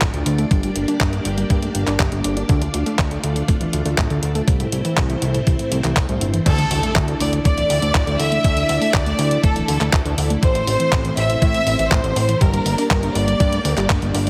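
Italo disco at 121 BPM in D minor, melodramatic and danceable, where a thumpy electronic kick, a detuned 8-bit drum machine with handclaps, hi-hat and crash, a fat, saturated analog bass, a warbly, dusty pluck playing chorused and delayed arpeggios in the background, and a lush vintage string machine holding sustained chords through an ensemble chorus are joined at 6.5 seconds by a biting, up-front violin section melody with vibrato and delay and a very quiet electronic impact, all under plate reverb and a heavily compressed, radio-like sound.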